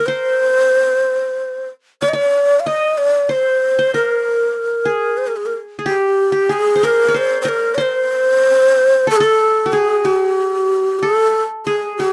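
Arabic music in maqam bayati on C at 93 BPM in a stately 3/4, where a breathy low ney carries the melody up front with reed-cane chiff, crisp attacks and an unsteady vibrato, while a quieter fingerpicked qanun plays a bright-edged second line on its triple strings, all captured as a dry, close 1970s-style studio recording with light reverb that moves into a new section at 9.7 seconds before this cut from a longer piece ends at 12.1 seconds.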